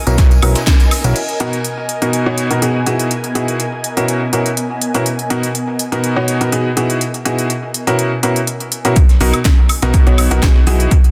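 Piano house at 123 BPM in B major, joyful and euphoric, with a light swing on the sixteenths in this short cut from a longer piece. A clear, woody upright piano, slightly detuned and worn, carries the riff up front across the whole passage, shaded by a low-pass filter and delay and pumping against the kick, while an ethereal, airy pad with ensemble chorus and built-in reverb breathes underneath until 9.0 seconds. Chords move between Emaj9/B and Bmaj7, and a house drum kit with a cracking snare, crisp hats, crash and woodblock runs throughout. The opening moments stack a punchy, tape-warm electronic kick, a fat, detuned analog bass with tube saturation, a dry tambourine in the background and a gritty sampler-style break kit with a high-tuned snare, before these thin out and leave the piano, pad and house kit to ride the middle stretch. At the drop at 9.0 seconds the kick and the break kit return, with the thick sawtooth bass following a moment later, driving the passage to its close. 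The dense, heavily limited modern master sits in light digital ambience.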